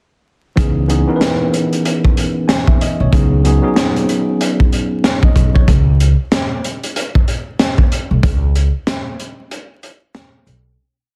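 Gritty and tough, this short boom-bap hip-hop piece swings on a saturated, dark breakbeat kit with a tight kick and high-tuned snare hitting hard on the backbeat, while a woody, growly pizzicato upright bass loops a deep line up front. A worn, slightly out-of-tune tine electric piano, lightly overdriven and tape-colored, pushes rootless chords from C#m9 to B69/C# with grace notes and short fills, repeating like a sampled loop until it drops out at 5.7 seconds. Bass and drums carry the break that follows and fade out from 8.2 seconds, all within a small room, under vinyl crackle and a dense, heavily limited master.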